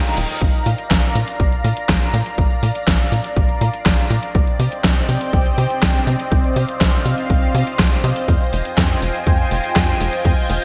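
A tight, punchy sequencer bass of sawtooth and square waves with ring modulation and filter plucks drives this sunny, playful italo disco excerpt at 122 BPM in Bb mixolydian from 0.2 s, beneath a lush, detuned unison pad treated with chorus and phaser, an up-front gated 80s digital drum machine of handclaps, cabasa, hi-hat and overdriven gated-reverb snare, and a layered electronic kick that enters at 0.4 s, set in a bright 1980s-style digital production moving through Bb, Cmadd9 and Fm7.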